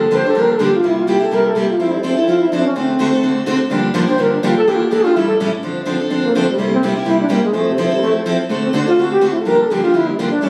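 Captured on a phone in the room and given moderate studio reverb and compression, this brief cut from a longer jazz piece swings gently at 251 BPM in D minor with a fiery, virtuosic mood. A dark, breathy trombone carries the solo melody throughout, its soft attack and light vibrato giving the line a whispered, intimate character. Beneath it, a bright picked steel-string acoustic guitar supplies the accompaniment with audible finger squeak, moving through changes such as Gm9, C7, Fmaj7 and D7.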